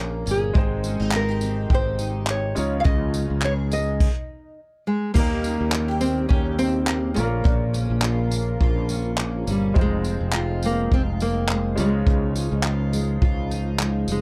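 A lightly swung 4/4 groove at 104 BPM comes from a soft, up-front brush drum kit with a punchy kick, handclaps, tambourine and crash cymbal, entering at 0.3 s alongside a fingerpicked classical nylon-string guitar melody, while a growly fretless electric bass with ensemble chorus sits prominently underneath. This easy-going, sunny acoustic pop excerpt in Eb mixolydian moves through chords like Bbm, Abmaj7, Dbadd9, Eb7 and Fm7. It is filled out by a double-tracked, full-bodied jumbo steel-string acoustic guitar, a woody upright piano with audible action noise and long sustain, and a distant French horn section holding sustained chords with light vibrato, all in a dry, dark production with a full stop from 4.0 to 5.2 s.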